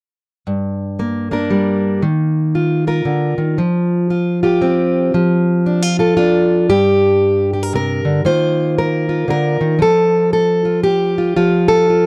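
Haunting and melancholic, this short passage from a longer folk piece features a single fingerpicked, plugged-in steel-string acoustic guitar, playing alone from 0.5 to 12.1 seconds. The music moves in a swung triple metre, giving the solo fingerstyle part a lilting, waltz-like sway. The guitar spans G2 to C5 and sits up front with a warm concert tone. The harmony circles through Gm, Ebsus2 and Fsus2. Around 9.8 seconds the chords fall away briefly before a rootless Dm/F returns. The recording is dry and close, in a 1970s studio style with little reverb.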